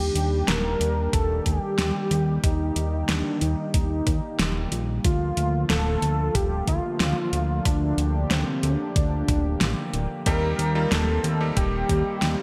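A straight 4/4 pulse at 92 BPM carries this cinematic, nocturnal synthwave piece, where a thumpy sampler-style kick joins at 1.1 s alongside a layered pop kit with a gated-reverb snare and metallic hats, a fat, detuned sawtooth bass sits up front, a smooth pad with chorus and sidechain pumping sustains Ebmaj7 and Bbmaj7/D, a thick, bold unison lead carries the melody through digital delay, and clangy, cutting electric grand piano stabs arrive at 10.3 s on Cm7/Eb, all framed by light reverb and bright 1980s-style digital production.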